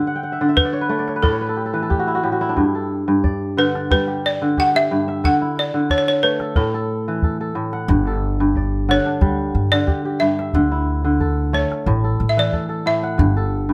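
A straight 4/4 pulse at 90 BPM drives this joyful, hypnotic excerpt of West African string and xylophone music in G lydian, where a crisp, ringing fingerpicked kora opens with a fill before settling into arpeggios, a woody, buzzing balafon struck with hard rubber mallets carries the melody up front with plate reverb, a small, close calabash adds percussion from 0.6 seconds, and a thumpy, gut-strung pizzicato upright bass enters at 7.9 seconds, the whole set in a lightly reverberant space.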